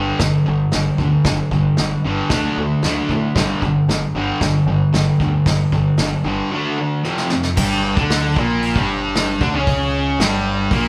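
A double-tracked fuzz guitar riff opens this swaggering, raw garage rock excerpt in G minor at 114 BPM, bright and up front over a growling, overdriven picked bass, with a vintage brush kit of kick, snare, hi-hat and crash joining at 0.2 seconds. The drums sit close and mid-forward with a punchy kick and a rolled-off top, and the whole group sounds like a band playing live in one room with moderate studio reverb. Power chords on G and D lead to a break at 6.5 seconds, a drum fill pushes into a new section at 7.6 seconds, and the harmony settles on G minor as the clip is cut from a longer piece.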